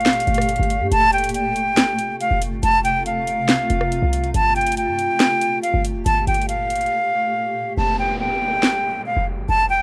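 Hip hop in a half-time trap feel, this wistful yet triumphant passage is led by a breathy, close-miked concert flute carrying an expressive, straight-toned melody up front over a cloudy, evolving granular pad. A punchy, tight 808-style bass and an electronic trap kit with a sharp snare, handclaps, rim clicks and metallic hi-hats drive the groove in a dry, rough home-demo mix. After a silent gap from 6.9 seconds, a downlifter enters at 7.8 seconds as the hi-hats drop out and the pad has ended, and the drums stop at 8.7 seconds.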